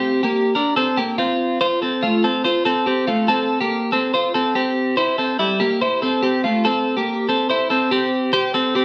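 A straight 4/4 pulse at 143 BPM carries this breezy, bright indie pop fragment, cut from a longer piece and tuned slightly flat to A4 = 436 Hz. A lone twelve-string electric guitar plays throughout its 8.8 seconds, picked clean and compressed, sitting up front with a warbly pitch drift as it moves through Csus4, F and C6 before landing on C5 at 8.3 seconds. The guitar sounds live in a large studio room, with moderate reverb giving it an airy ring.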